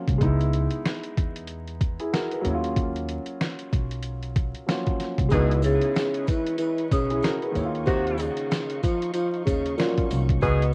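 A swung 94 BPM boom-bap groove of gritty, pitched-down sampler drums with a thumpy kick sits up front under woody pizzicato upright bass and a dark, mellow grand piano on C#m9 and D#m9, and at 5.3 seconds a breathy, whispered tenor saxophone takes the melody over bowed strings in the background, tight horn stabs with tape echo and jingly sleigh bells, all wrapped in cassette tape, vinyl crackle and light reverb for a reflective, gritty hip hop excerpt.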